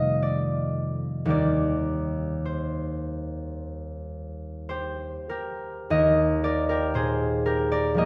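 Classical solo harp piece, dreamy and peaceful and cut from a longer work, in which a fingerpicked, ringing concert harp sits up front in Eb major at a rubato 46-61 BPM in 4/4, spanning Eb2 to F5 as it moves from F9 through Eb6 to an Eb chord at 5.9 seconds, all bathed in the generous reverb of a church or concert hall.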